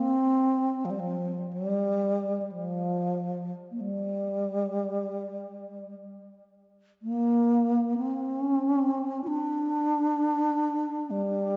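A dark, warm production wraps this short cut from a longer piece in a wet concert hall reverb and a small room ambience, giving it a spacious, haunting air. A breathy bass flute plays solo and up front for the full 11.6 seconds, its low, expressive line carrying vibrato and a soft attack through a tape echo. The result is a meditative world piece of quiet, unhurried reflection.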